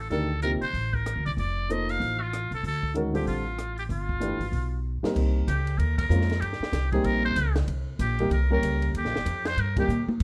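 A swung 4/4 pulse at 190 BPM drives this spiritual, searching modal jazz excerpt in D phrygian, shifting to C phrygian at 5.2 s. From the start, a buzzy, growling metal-muted trumpet with vibrato and scooped notes carries the melody up front over a woody, thumpy pizzicato upright bass on gut strings, an intimate baby grand piano with audible action noise and short sustain, and a compact cocktail drum kit with a high-tuned snare and punchy kick. It is all in a dark production with light reverb, with drum fills at 4.8 and 9.9 s and band accents punctuating the change from Dm7 and G7 to Cm7 and Eb.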